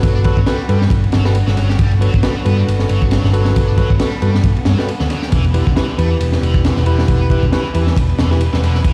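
Energetic and swaggering, this short breakbeat cut from a longer piece moves at 136 BPM in 4/4 with a swung sixteenth-note feel. A crunchy breakbeat kit sits up front, its tight kick, high-tuned snare and ride cymbal sounding gritty and saturated with a rolled-off top, while a round, dark hollow-body electric bass, picked and amped, anchors the low end just as prominently. A biting, overdriven guitar riff, double-tracked and bright, carries tube saturation, harmonic tremolo and digital delay, and a bell-like tine electric piano adds clean, direct stabs with its own delay until 8.4 seconds. Behind them, a warm chamber string section holds bowed, vibrato-laced chords that pump against a sidechain. The harmony moves from Gmaj7 to Em at 5.3 seconds, and the whole mix plays through a big sound system in a bare stone room, with small-room reverb and vinyl crackle lending a dusty, lived-in character.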